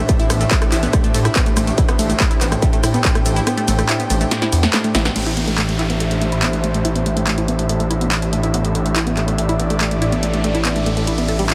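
A distorted, layered electronic kick, re-recorded in a large room, hammers up front through this relentless, intense stretch of driving peak-time techno until 3.1 s, joined by a gritty, resonant synth bass and a punchy, tape-toned analog drum machine of snare, handclaps, hi-hat, rim click, shaker, ride and crash. A lush, detuned unison pluck riff with dub echo, a swarming granular drone in the background and an airy, breathy pad with chorus each pump with sidechain, while a drum fill and band accent lead into a filter sweep that runs through the second half from 5.2 s. There an electronic downlifter and riser come in, the riser building from 9.5 s, all heard through a heavily compressed, radio-like sound with faint mains hum.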